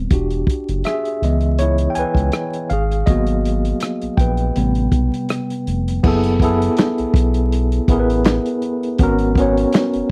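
A clean tine electric piano takes a solo for the first six seconds over a smooth, dark synth bass with a ring-modulated edge and a muffled, lo-fi soul drum kit of tight kick, snare, rim click, hi-hat, handclaps and crash on a light 81 BPM 16th-note swing, drifting through minor ninth chords in F# dorian before shifting at 6.0 seconds to F#m11 and G#m11 in this smooth, late-night neo-soul R&B excerpt, all dry and close with a 1970s studio feel and a bed of vinyl crackle.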